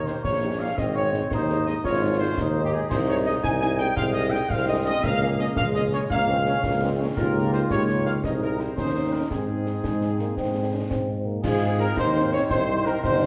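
Proud and spirited, this military-style march for wind band moves at 113 BPM in a straight 6/8 in Ab major. A soft-attacked trumpet section carries the melody up front over a warm tuba bass, with a distant, roomy trombone section holding sustained chords, a very quiet, mellow French horn section in accompaniment, and close concert snare, bass drum and dark clash cymbals keeping the march going. A vintage-toned euphonium adds a second line from 9.8 seconds and an airy flute ensemble joins in the background at 11.4 seconds, all within a wet recital hall reverb in a fragment cut from a longer piece.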